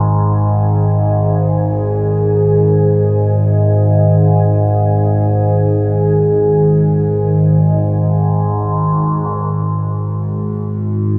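Drenched in a huge, cavernous reverb with a long seven-second tail, this short cut from a longer dark ambient drone piece feels desolate and unmoored from any pulse. Up front, a resonant sawtooth-and-sine drone with moving, evolving overtones and chorus sits low in the register throughout. Behind it, a moody, detuned analog pad with a sub octave fades in over its sustained chords until 9.3 seconds, after which the drone carries on alone to 11.2 seconds.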